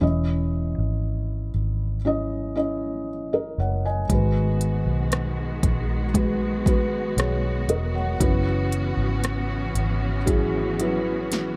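A felt-muted upright piano provides the accompaniment in this heartbroken pop ballad excerpt, its thick-felt tone soft, mellow and intimate, with the faint clatter of its action audible up close. Beneath it, a vintage foam-muted electric bass sits up front with a round, punchy, amped sound, and the two carry the opening alone at a slow 58 BPM in 4/4 with a straight feel, in G# minor. At 4.1 seconds a lush studio string section arrives with expressive vibrato and a smooth top, holding sustained bowed chords further back in the mix, while a layered electronic deep house drum kit enters alongside it with a punchy kick and snare, smooth hi-hats and a rim click, re-recorded in a small room and placed up front. The harmony moves from C#madd9/E to G#m7 and then F#7sus4, deepening the sense of longing. A drum fill at 11.3 seconds closes this cut from a longer piece. The production is dark and dry, with little reverb, keeping every part close and personal.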